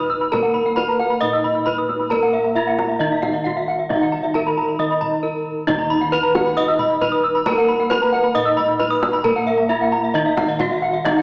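Heard through warbly, worn cassette tape on a small speaker with a wet, reverberant stage ambience, this brilliant, hypnotic Balinese gamelan fragment at 134 BPM in Eb pelog sets an airy, up-front bronze metallophone melody struck with a horn mallet over a mellow, boxy metallophone accompaniment on padded disc mallets, two bright horn-mallet metallophone arpeggio lines shimmering with paired-tuning beats, round, beating bossed gongs carrying the bass, and a tight kendang in the background, with a brief break from 5.0 to 5.7 seconds.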